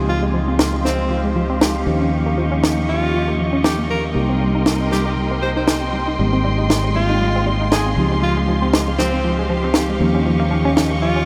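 A groovy, feel-good nu-disco passage at 118 BPM in 4/4 rides lightly swung sixteenths, with a fingered electric bass sitting up front and a small-room, high-tuned acoustic snare coming in at 0.6 seconds, while a very quiet electronic downlifter runs until 2.1 seconds. A clear, punchy tenor saxophone with light vibrato and a smooth top carries the pop-style melody through analog delay. Beneath it, a mellow tine electric piano adds background accompaniment, and a round, wave-folded analog pluck, with chorus, delay and a filter sweep, adds arpeggios in the background. A distant, lush bowed string section holds filtered chords over Dbmaj9#11, Eb9, Cm7 and Abmaj7, all soaked in a huge, dreamy ambient reverb in this cut from a longer piece.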